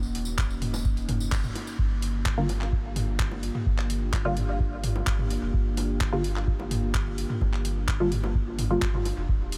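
A dry, tape-warmed electronic kick drives this hypnotic, deep dub techno excerpt at 128 BPM in G minor, anchored by a soft, round sub bass and a dark, detuned sawtooth pad that both pump against the sidechain, the pad carrying chorus and its own reverb. An overdriven deep house kit of handclaps and hi-hat, plus background electronic toms and bongos, sends hits into dub echo. After a full-band accent at 1.3 seconds, a jingly acoustic tambourine drops out at 1.8 seconds as the chords move from Ebm7 to Gm7. From 2.4 seconds a muted, filtered chord stab with chorus, phaser and dub echo decays through a light reverb.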